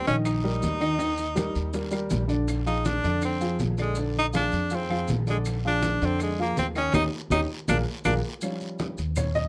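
A bright, scooping tenor saxophone with vibrato leads this lively, sunny Afro-Cuban jazz excerpt in Eb major at 161 BPM, over an intimate baby grand piano with audible action noise, a woody, thumpy pizzicato upright bass up front, and a quiet percussion bed of thin-skinned congas, round distant bongos, dry claves, raspy guiro and grainy maracas, arriving at a band accent from 6.9 seconds and a drum fill from 7.3 seconds before the piano takes a short solo at 8.4 seconds.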